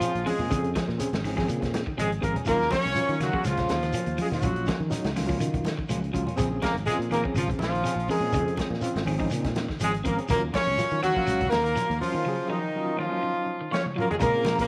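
Set in a moderate echo-chamber reverb, this intense, defiant afrobeat excerpt at 123 BPM puts a clear, punchy horn section up front with an octave-doubled melody over Bbm9 and Ebm9 chords, carried by a round, dark fingered electric bass and a muffled, lo-fi vintage drum kit with a tight kick. In the background, a clean electric guitar with phaser picks arpeggios, a very quiet hollow-body guitar adds stabs, and a gritty, overdriven reed electric piano plays with fast tremolo, while a grainy shekere and softly played, ringing congas add percussion. A break begins at 12.3 s, and as a drum fill starts at 13.7 s, a mellow tine electric piano with phaser enters, joined by a solo trumpet with vibrato.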